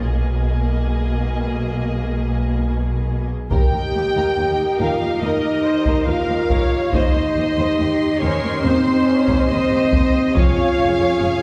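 Heroic and adventurous, this epic orchestral film-score passage opens with a build-up, as soft-attack violins carry the melody from the background above a second violin line and rich violas. Dark, distant French horns hold sustained chords over lush bowed cellos and double basses. At 3.5 seconds a close string section adds sustained chords and a taiko ensemble strikes in with hard sticks, all set in the reverberant wash of a scoring stage.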